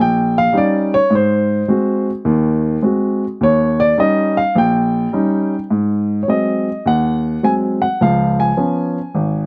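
Warm and sophisticated, this short cut from a longer solo jazz piece swings at 105 BPM in 4/4, its eighth notes given a relaxed lilt. A lone grand piano carries everything, ranging from Ab1 up to Ab5, with an intimate, natural tone and the audible noise of its action close at hand. The sound sits up front and dry, captured outdoors with little reverb, so each note arrives plainly. The harmony moves through dominant seventh chords, starting on Eb7, shifting to Ab7 and back, and reaching Db7 at 8.0 seconds. A new section begins at 5.7 seconds, and the piano plays on until the fragment closes at 9.5 seconds.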